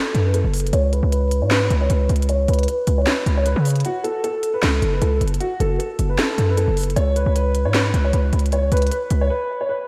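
A distorted 808-style bass dominates this brooding trap excerpt, its heavy, aggressive sine tone carrying a noise layer, a fast attack and a decaying tail that sits up front from 0.1 seconds. Above it, a dark concert grand piano carries the melody between F#4 and C#5, mellow and boxy with long sustain, dressed in subtle chorus, delay and a low-pass filter that sweeps through the opening 3.8 seconds. A trap drum kit of handclaps, crisp hi-hats and a sharp snare drives the half-time feel at 154 BPM in F# minor, with a short break around 3.8 seconds. The harmony moves between F#5 and C#5 power chords, and the whole mix is soaked in a lush hall reverb with vinyl crackle for a dreamy, shadowy atmosphere. The bass drops out at 9.3 seconds, leaving the piano to ring alone until the cut.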